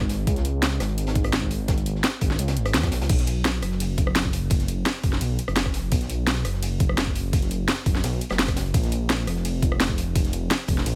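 A dry mix with little reverb opens this short cut from a longer liquid drum and bass piece, tuned slightly flat to A4 = 436 Hz and moving in a straight 4/4 at 170 BPM. The mood is dreamy and rolling, carried by a deep, rumbling detuned saw bass that sits up front, its sawtooth and sine layers beating against each other with a fast attack, long sustain and tube saturation that keeps it dark. A compressed, sampler-style electronic kick gives a gritty, thumpy pulse, re-recorded in a small room. Above it, an overdriven electronic drum kit, also placed up front, brings a cracking snare, bright hats, crash and ride cymbals and rim clicks. Tucked in the background, a crunchy acoustic breakbeat kit adds a smooth, high-tuned snare and hi-hats with a rolled-off top, all four parts running together for the full 11 seconds.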